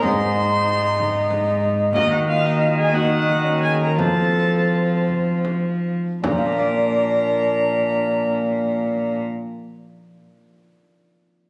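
A rich, reedy cello with an airy bow and gut-string tone sits up front in this solemn, rustic renaissance-style consort dance in a straight 6/8, moving at 50-62 BPM counted in dotted quarters and slowing from 1.0 to 6.2 seconds. Above it a warm period-style viola carries the second line while a mellow cornet plays the melody in the background, a clear bassoon with light vibrato and a bright, ringing fingerpicked Celtic harp fill in the accompaniment, and a close, dry frame drum plays quietly until 6.6 seconds. Cut from a longer piece, the music moves through Ab, Ebm and F before landing on Bb, where the harp rings on alone to 10.1 seconds in a reverberant recital-hall sound captured from within the room.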